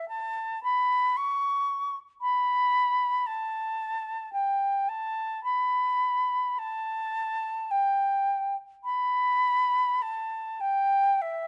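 This classical fragment, cut from a longer piece, features a single silver concert flute playing a free, expressive line with a lyrical, nostalgic mood. The tempo sits at a slow 49-58 BPM in 4/4, with a rubato feel that lets the phrasing breathe, and the tuning is set to A4 = 443 Hz. The flute plays alone from 0.0 to 11.5 s, staying between E5 and C#6, and its tone is airy and metallic, with vibrato and tongued notes. It sits up front in the sound, though it also carries a slightly distant quality. Close, detailed microphones capture the instrument, and a light reverb adds a soft sense of space around it.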